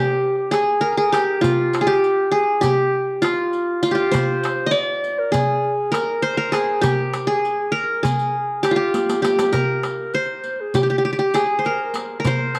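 Up front, a bright, fingerpicked qanun carries the melody with a bright-edged, triple-string ring and a slapback echo. It plays a soulful, hypnotic Turkish makam ensemble piece in Ussak on C, in 9/8 at 200 BPM counted in eighths. A mellow, classical-style clarinet traces a second line in the background, while a crisp, close metal-shell darbuka enters at 0.2 s and a distant riq with bright jingles follows at 0.5 s. A drum fill arrives at 8.9 s, all within a moderate spring reverb.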